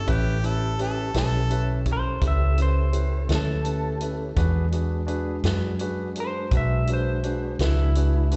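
A round, punchy muted electric bass sits up front in this rollicking, swaggering 12/8 slow blues, cut from a longer piece over A9 and E9 chords, where a bright, overdriven harmonica with slapback echo plays a short second line until 1.7 seconds before a twangy, slightly broken-up electric guitar picks out the melody from 1.9 seconds, backed by a woody, intimate upright piano, a soft, flute-like tonewheel organ with slow rotary speaker and chorus vibrato in the background, and a natural vintage drum kit with a medium-tuned snare, all heard as a live gig through the venue's PA with a muffled top end.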